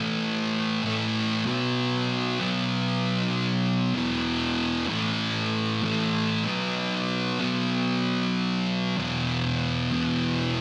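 A swaggering, menacing rock passage at 96 BPM in a straight 4/4, carried entirely by a thick, double-tracked fuzz guitar that sits up front and picks its way through A5, B5 and E5 power chords from its low E2 register up to B3. The distorted tone fills a wet, digital echo-chamber space with a 2.0-second reverb tail, and this short cut from a longer piece runs just 10.6 seconds.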